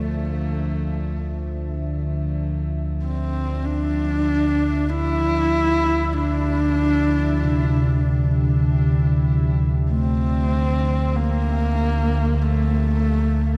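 Dark and desolate, this dark ambient drone excerpt opens on a deep, rumbling, detuned drone that fades in up front, while a moody, mellow pad with chorus fades out in the background. A husky horsehead fiddle carries the melody close and intimate, with light vibrato, portamento and an airy bow touched by delay. At 7.4 seconds a soft bronze metallophone joins with ringing arpeggios, all set in a vast, echoing cathedral reverb with a cassette-tape character.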